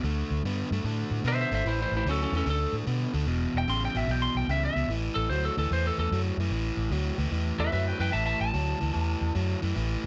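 Gritty and soulful, this electric blues shuffle swings along at 148 BPM as a biting overdriven guitar riff and a dark, round, foam-muted fingered electric bass hold the low end up front, while a bright, twangy, lightly driven lead guitar enters at 1.3 seconds and stretches into a compressed solo from 4.9 seconds over chords moving from D5 through A, E5 and A5, all in light reverb in a piece cut from a longer performance.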